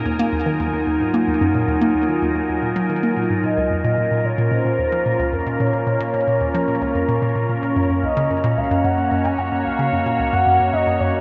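A hollow, bouncy square-wave pluck sits up front, its detuned riff in the low register carrying a fast attack, short decay, a moving notch, chorus and tape echo. This ambient, sequencer-driven space music moves at 111 BPM in a straight 4/4 in Bb minor, with an expansive, mysterious mood. Beside the pluck, an evolving wavetable pad holds sustained chords with a morphing, warbling, vintage sine character, slow attack and long release, dressed in chorus and its own built-in reverb. Far behind, an airy, breathy, wind-like tuned noise texture hovers high and dark. At 3.4 seconds an expressive synth lead enters with a smooth melody of sawtooth and triangle tones, shaped by soft attack, vibrato, lush chorus and tape echo, while the harmony moves from Ebmadd9 to Bbmadd9 and then to Gb at 7.8 seconds. A huge, wet ambient reverb with a long 7.8-second tail and a top end capped at 7.9 kHz bathes this 11.2-second passage, which is cut from a longer piece.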